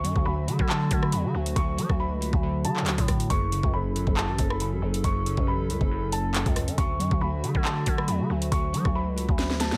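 A dark, boxy grand piano carries the melody high in its range from the opening moment, its notes trailed by tape echo, while glassy digital keys with chorus and a filter sweep play the accompaniment underneath. This cold, menacing slice of drill-style hip hop moves with a half-time feel, anchored by a growling, buzzy 808-style bass that sits up front with a saturated edge and decaying notes. The electronic drill kit is the most forward element, overdriven, with a knocking kick, sharp snare, metallic hi-hats, handclaps and rim clicks. Far back in the mix, a hollow, flute-like pad with detuning and chorus holds soft, slow-blooming chords beneath the harmony, which moves from D to F#m and back to D. The dry, close sound keeps the piece stark, and a drum fill at 9.4 seconds closes this excerpt from a longer piece.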